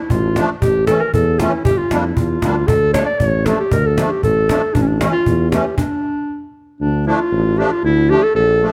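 Klezmer in 2/4 at 116 BPM, this short cut from a longer piece sets a soulful yet festive mood in D harmonic minor, tuned slightly flat at A4 = 437 Hz. A dark clarinet with a smooth top carries the melody in a classical style, sitting up front as the lead voice. Beneath it, a mellow tuba with light vibrato plays the bass line, also classical in manner and up front, while a reedy musette accordion with shimmering wet tuning fills in the accompaniment. A snappy, compressed cajon with snares adds a saturated pulse until it stops at 5.9 seconds, and the band breaks for a stop from 5.8 to 6.8 seconds before the phrase returns on D minor. The harmony moves through D minor, A and G minor, and the whole group sounds in a moderate recital hall reverb that gives the players a natural sense of space.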